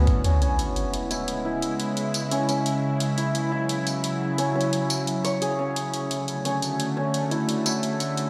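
Half-time drum and bass with a dark, cinematic mood, where a tense, detuned string-like drone holds sustained chords with vibrato and sidechain pumping under a shimmering, hammered santur playing arpeggios through delay and a filter sweep, while bright electronic hi-hat and tambourine tick along and a sub drop hits at 0.2 seconds, all ringing out in a stony, reverberant room.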